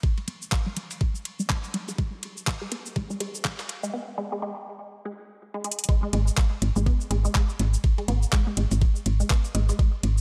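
Minimal techno at 123 BPM in G# minor, this cool, quirky excerpt swings its sixteenths and sits in a dry, gritty digital ambience. A knocking, up-front electronic kick drives from the start, joined by a faint, compressed sampler-style kit of ride cymbal and snare, its cymbals pumping against the kick and both cymbals and snare thinned by high-pass filtering. A tape-warm garage kit adds handclaps, metallic hats and shaker, while a juicy, squelchy blip pluck riff between G#3 and B3 wriggles through chorus, phaser, analog delay and sidechain pumping. The first half is a build-up with a filter sweep on the synth arpeggio, a break from 3.9 seconds and a drum fill at 5.6 seconds. Shortly after the drop at 5.9 seconds, a woody, round FM bass on G#1 arrives up front at 6.1 seconds, its dark, decaying notes pumping with the kick until the cut.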